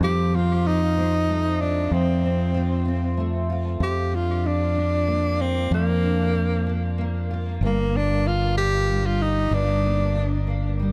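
An echo-heavy mix in a small room frames this swaying, tender six-eight pop ballad in Bb major at 63 BPM, where a breathy, close-miked tenor saxophone with vibrato and subtone carries the jazz-style melody up front through tape echo until 10.5 seconds, over a double-tracked, fingerpicked steel-string acoustic guitar, also tape-echoed, and a round, punchy, dark fingered electric bass, as the harmony moves from F to Bb/F to Gm in this short cut from a longer piece.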